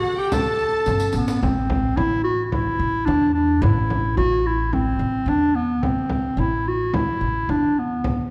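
Bathed in a wet recital hall reverb, this short cut from a longer Turkish makam piece in A huseyni moves at 109 BPM in a straight 4/4 with a soulful, hypnotic pull. A smooth-topped, classical-style clarinet carries the melody up front, while a lush, bowed violin section with vibrato and bright-jingled vintage riq sound only briefly at the opening before a drum fill around 0.9 to 1.4 seconds leads into the next section. A deep, close frame drum played with hard hands, entering just after the start, and a woody, growly pizzicato upright bass on steel strings, joining near 0.9 seconds, then carry the groove beneath the warm clarinet line.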